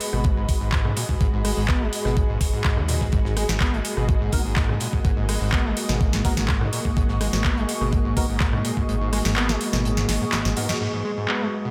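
A straight 4/4 pulse at 125 BPM drives this gritty, trippy acid house cut in G# minor, resting on a single G#m7 chord. An overdriven, thumpy electronic kick anchors the groove. A booming analog drum machine adds crisp snare, metallic hats, handclaps, rim clicks and crash cymbal, while a very quiet, dry 70s kit with a fat snare sits far beneath. A round, deep analog bass pumps with sidechain, and a squelchy, resonant acid bass riff sits in the background with distortion, 12-bit grit, chorus and a diffuse delay. Above them, a lush vintage string machine holds sustained chords that breathe with sidechain pumping, and a blurred granular cloud pad drifts higher in its own reverb. A hollow, very quiet organ stab enters at 4.3 seconds, the kick drops out at 8.9 seconds, and a drum fill begins at 10.1 seconds, leading to a band accent in a dreamy, reverb-soaked hall.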